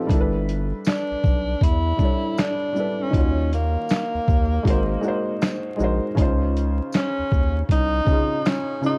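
A breathy tenor saxophone carries a scooped, vibrato-laced jazz melody from 0.9 seconds over a felt-muted upright piano with audible action noise and cassette-tape character, a round, deep analog bass, a gritty, pitched-down boom bap drum kit with thumpy kick, snare, hi-hat, shaker and handclaps, and a jingly tambourine far back in the mix, in this hazy, nostalgic lo-fi hip hop excerpt at 79 BPM with a swung feel, moving through G69, D#m7, G#9 and C#maj9 amid small-room ambience and vinyl crackle.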